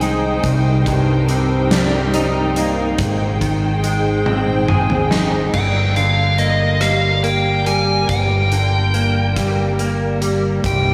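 Soaked in a lush 2.8-second hall reverb, this brooding, cinematic post-rock excerpt moves at a slow 47 BPM in 6/8, with rich, smooth bowed strings holding sustained chords beneath chorused, tape-echoed clean guitar arpeggios up front, a growling overdriven fingered bass, and a huge arena drum kit with bright cymbals, fat snare and punchy kick that plays a fill from 4.3 seconds before a nasal, overdriven lead guitar with a parked wah takes the melody at 5.5 seconds as the chords move from Cm7 through Abmaj7 to Gm.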